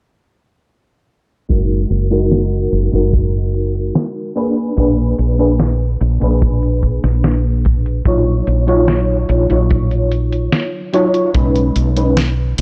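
Woozy and nostalgic, this vaporwave excerpt drifts at 73 BPM in F# major, with a mellow, warbling FM electric piano bathed in ensemble chorus and analog delay carrying chords from F#69 through A#7b9 and D#m9/A# to B69. A round, punchy woody fretless bass sits up front beneath a detuned 8-bit drum machine, whose tape-warm, gritty hi-hats and snare pass through low-pass filters and studio reverb, while a distant, roomy kick with a rolled-off top enters with the others at 1.5 s and drops out at 11.5 s. A filter sweep on the drums and a second filter sweep, along with light reverb and a low-pass filter on the mix, give the track a softened, faded sheen.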